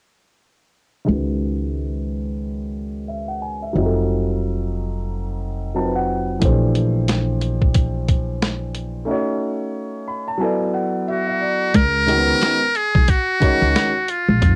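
This smoky, mellow jazz-hop cut opens at 1.0 s with a dark grand piano that is mellow and long-sustaining, run through a low-pass filter and cassette tape, with a filter sweep passing over it through the opening section. An upright bass joins almost at once, its pizzicato steel strings woody and growly. At 6.4 s a compressed boom bap sampler-style kit arrives, pitched down and gritty, with a thumpy kick, a high-tuned snare and hi-hat. Piano fills and a break stretch the first section before the second begins. A muted trumpet with a metal mute takes the solo melody at 11.1 s, sounding brilliant yet thin and buzzy, with a soft attack, light vibrato and a cassette-tape tint. The sound is dry and close, a home recording on cassette with every part up front, lightly swung and moving through lush extended chords.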